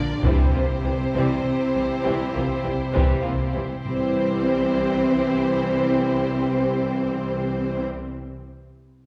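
A cinematic, epic orchestral film score in a rolling 12/8, this short fragment of a longer piece feels heroic and triumphant. A focused, lush violin section carries the melody with vibrato, while a mellow French horn section and a background studio string section hold sustained chords beneath it. A cello section and a distant double bass section anchor the bass, a smooth viola section fills in accompaniment, and a very quiet second violin line adds soft-attacked, expressive colour. A saturated, compressed taiko ensemble struck with heavy sticks sits up front from 0.2 seconds and stops at 3.5 seconds, after which articulate timpani on hard mallets take over from 3.9 seconds to the end. The whole orchestra is heard from further back in a scoring stage, bathed in a generous wet reverb that lends the sound a grand, spacious sweep.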